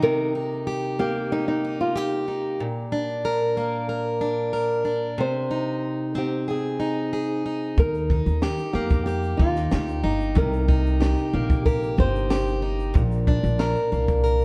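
A straight 4/4 pulse at 93 BPM carries this sunny, heartfelt acoustic pop excerpt, opening with an up-front picked plugged-in steel-string acoustic guitar picking through chords like Cm7, Bb and Ebadd9 beneath a dark, fingerpicked flamenco guitar melody with fresh strings and audible finger squeak. At 7.8 s a woody, thumpy pizzicato upright bass on gut strings joins alongside a compact cocktail drum kit of kick, shaker and high-tuned snare, its punchy kick and smooth, rolled-off top giving a small-room feel. Light reverb places the whole mix a little further back in the room, and the flamenco guitar drops out at 12.6 s before the fragment cuts off at 14.4 s.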